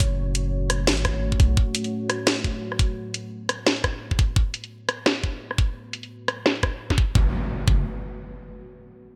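A deep, detuned sawtooth pad with chorus, sidechain pumping and a filter sweep sounds from the very start of this dark, spacious half-time drum and bass piece at 172 BPM in F# minor, together with a mellow sine 808-style bass that stops at 1.6 seconds, a knocking, up-front electronic kick and a filtered kit of hi-hat, rim click and cracking snare, all in a bright 1980s-style digital mix with light reverb, before an electronic impact and a brief return of the bass arrive at 7.2 seconds.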